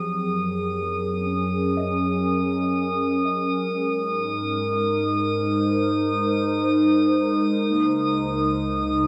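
Spacious and serene, this ambient excerpt floats in free time, tuned to A4 = 436 Hz, with a warbling, nostalgic tape-like pad holding sustained chords up front that move from Gb to Ab and settle on Db major seventh. A deep, ominous drone fades in beneath from 0.3 seconds, while a glassy texture of drifting overtones hangs high above and a very quiet felt-muted upright piano traces soft, intimate arpeggios. The dark production is bathed in a huge, wet reverb lasting 7.5 seconds, with chorus on the pad and the glass texture.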